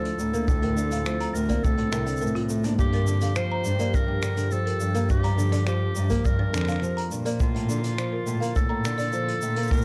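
A bright, forceful clarinet carries the melody in this pastoral, delicate folktronica excerpt, its light vibrato and jazz-style phrasing touched with digital delay. At 104 BPM in 4/4 with a straight feel in Bb major, a fingerpicked ladder-braced acoustic guitar with old strings spins boxy arpeggios through digital delay of its own, while a single bowed cello with vibrato supplies a woody bass. Beneath them, a warbling, lo-fi pad of detuned sawtooth and triangle tones holds mellow, nostalgic chords very quietly, and from 0.6 s a rustic marimba with medium hard mallets plays a dry second line with delay in the background. A distant, roomy vintage kit played with brushes adds finger snaps, hi-hat and shaker, and a punchy kick joins at 0.5 s. The harmony moves from Bbmaj7/D to Gm7 at 2.8 s before settling on Bbmaj7, all within light reverb and a dark, warm production.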